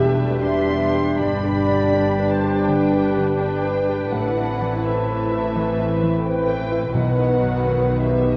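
This moving, longing fragment of a cinematic film score opens with every part except the timpani already sounding, as a muted violin section carries a dark, veiled melody, bowed con sordino with lush vibrato. Around it weave second lines from a shadowy cor anglais, a very quiet, roomy clarinet, a pure, straight-toned flute section and a second muted violin section, while a distant viola section and a vintage-toned grand piano fill in the accompaniment. Mellow French horns hold sustained chords in the background, a concert harp rings out fingerpicked arpeggios, and muted cellos and double basses anchor the bass with bowed weight. The harmony moves through Em7, G and Amadd9 before arriving on B at 6.9 s, where a very quiet timpani enters with a round, soft-mallet tone until 8.0 s. The rubato phrasing breathes freely inside a moderate scoring-stage reverb, and the recording carries the worn, warbling pitch drift of old cassette tape.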